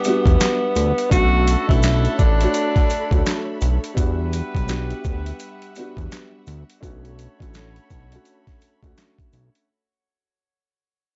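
This moody, gritty boom-bap hip-hop clip moves at 84 BPM in 4/4 with a swung sixteenth-note feel, circling between Em9 and Bm9. A breathy tenor saxophone sits up front with a short, intimate jazz-style phrase, played with subtone, vibrato and scooped notes, that ends at 3.4 seconds. Beneath it, a compressed, pitched-down sampler drum kit with a thumpy kick, medium-tuned snare, hi-hat and handclaps carries the groove alongside a fat, detuned analog bass with a filter sweep, entering at 0.3 seconds. A dark, woody upright piano with audible action noise supplies the accompaniment, while lush bowed symphonic strings hold sustained chords and a distant, roomy horn section adds jazz stabs in the background. Saturated maracas sit far back in the mix. The production is dry, dark and warm, and the whole passage fades out across its length.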